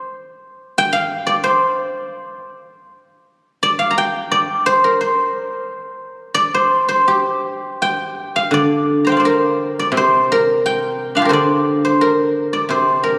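This is a Chinese traditional solo for plucked strings in G yu mode: a longing, contemplative passage cut from a longer piece, moving in a free, rubato 2/4 at around 80-90 BPM. A single guzheng, played with fingerpicks, sits up front with a mellow, silvery, ringing tone, ranging from C3 to Bb5 and shifting into a new section at 8.5 seconds before the clip ends at 13.2 seconds. Captured on a phone in the room, the sound carries a long, wet hall reverb with compression that adds a slightly enclosed, club-like air.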